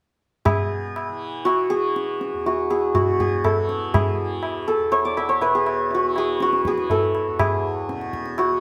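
Set in a seven-beat cycle at 121 BPM with a straight feel, this short cut from a longer Hindustani classical piece moves in raga Khamaj on E, tuned to A4 = 436 Hz, and carries a radiant, devotional mood. The hammered santur leads the melody up front, warm, ringing and shimmering between F#4 and E5, its tone given extra bloom by a plate reverb. Beneath it, the tanpura holds a bright, buzzing, shimmering drone from E2 to E3, softly plucked and sitting well back in the balance. The low-tuned tabla supplies the percussion with a ringing, live-room sound. All three acoustic instruments play together from 0.5 to 8.6 seconds, wrapped in a light reverb.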